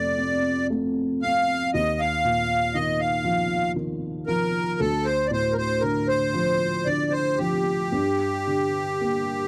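Celtic folk slow air in 3/4 with a haunting, longing mood and rubato feel, its reedy accordion with light tremolo tuning carrying a sweet melody up front over a felt-muted upright piano whose dark, boxy accompaniment carries audible action noise, both playing throughout this short cut from a longer piece, recorded dry and close in a small room with a 1970s studio character as the harmony moves from F through Ebsus2 and Dm to Gm.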